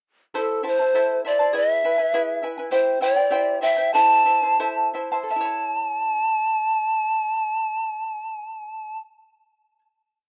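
Earthy and melancholic, this short Andean folk piece in A minor moves in a straight 2/4 at 82-101 BPM, with a breathy bamboo pan flute carrying chiff-tinged, vibrato-laden hook phrases up front over a bright, shimmering charango whose double strings are fingerpicked and strummed through open chord shapes, slowing from 2.7 seconds before settling on a closing A major chord at 5.3 seconds, all in a rough home-demo sound with small-room ambience.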